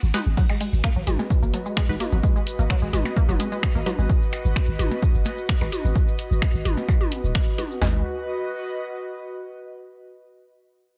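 Minimal techno at 129 BPM in G# minor, this short cut from a longer piece feels quirky and hypnotic, settling on a G#m7 chord after a brief break in the opening 0.4 seconds. Up front, a punchy analog drum machine drives kick, snare and toms with a tape-warm edge, while a second machine adds crash cymbal, finger snaps and hi-hat, and overdriven electronic toms and percussion blips run through delay alongside a grainy, close egg shaker. A deep sine sub bass with a pitch-drop attack pumps against the sidechain beneath them. A juicy, squelchy, nasal blip pluck with a resonant filter sweep, chorus and digital delay carries the riff, dropping out at 4.0 seconds and returning at 7.8 seconds, as muted dub chord stabs with phaser and delay sit in the background. An airy, breathy pad with ring modulation and a slow attack enters at 0.4 seconds and lingers to 9.6 seconds, its mellow chorus-tinged body pumping within a digital ambience.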